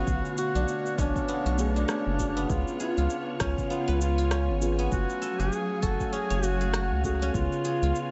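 A 99 BPM swung 16th-note groove of deep, tape-warm electronic kick and dub-echoed cabasa and rim click drives this mystical, meditative organic downtempo excerpt in C# phrygian dominant, where a close-miked duduk sings a vibrato-laden, scooped melody through analog delay over a round, dark analog bass, muted felt-like synth keys with chorus and dub echo, soft sul tasto string chords that pump with the sidechain, silvery guzheng arpeggios, and a breathy wind-like noise texture in the background, all moving through Bm9, C#7 and F#madd9 in an echo-heavy mix.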